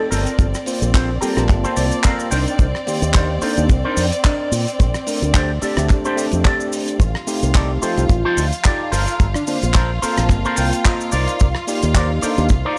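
A bright, up-front fingered electric bass with an envelope filter drives this groovy, cosmic nu-disco clip in G minor at 109 BPM with a light 16th-note swing, over a tight, dry kick and a damped 70s kit of hi-hat, rim click, cabasa and handclaps. A twangy, picked electric guitar with its own envelope filter and lush chorus plays a riff over tine electric piano with analog delay and distant, bowed symphonic strings that pump under sidechain, while clean electric guitar fills arrive at 1.5 and 10.3 seconds. A thick, detuned sawtooth unison lead with tape echo sits in the background, heard briefly at the start and again at 7.8 seconds, as the chords move through Gm11, Cm9, Bbmaj13 and Am7b5 in a gritty hardware recording with light room reverb.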